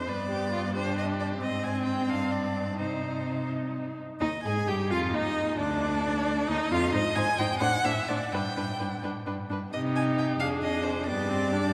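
In 6/8 at 88 BPM with a supple rubato, this quick classical-period movement for string quartet feels graceful and spirited, and it is cut from a longer piece. The first violin sings the melody up front with a rich, expressive tone, vibrato, soft attacks and portamento, while the second violin adds a warm, focused second line, the viola gives close, sliding accompaniment, and the clear cello holds the bass up front, all four playing across the full 11.7 seconds. Chords such as G, Ab, Cm and Ebadd11 ring out in a wet cathedral reverb, recorded in a church or concert hall.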